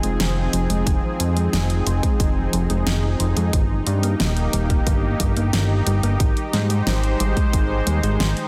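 Synthwave with a moody, driving pull, heard in a short cut from a longer piece in a straight four-four pulse. A lush, detuned unison pad holds sustained chords throughout, its slow attack and long release softened by chorus and set pumping by sidechain, moving from Fm7 through Eb to Abmaj7. Up front, a fat analog bass built from sawtooth, square and triangle waves with ring modulation and a filter sweep pumps along with the pad. Tucked in the background, a round, tine-like FM pluck resembling a thumb piano plays gentle, nasal arpeggios with a noise layer, chorus and tape echo. A pop kit supplies hi-hat and a fat, produced snare from the start, while a punchy, layered electronic kick enters at 0.9 seconds and stops at 7.7 seconds, both in small room ambience. Light digital reverb frames a dense, heavily limited modern master.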